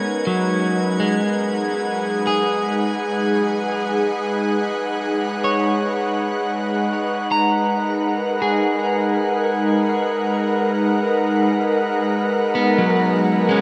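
A soft, breathy pad with chorus sits up front holding sustained chords, while a warm, slightly broken-up electric guitar picks arpeggios through tape echo and a glassy texture of drifting overtones fades out in the background by 7.3 seconds, the whole serene, melancholic ambient passage cut from a longer piece and steeped in a long shimmer reverb.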